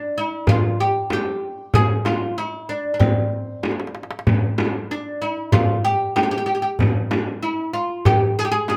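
Turkish makam ensemble music in G makam hicaz at 95 BPM, melancholic and soulful, where a woody, fretless oud with double strings carries the plectrum-plucked melody up front, a clay-shell darbuka played with soft hands sits close and dry, and a distant frame drum adds depth, with a drum fill from 3.6 to 4.3 seconds, all in a moderate small-room reverb within a passage cut from a longer piece.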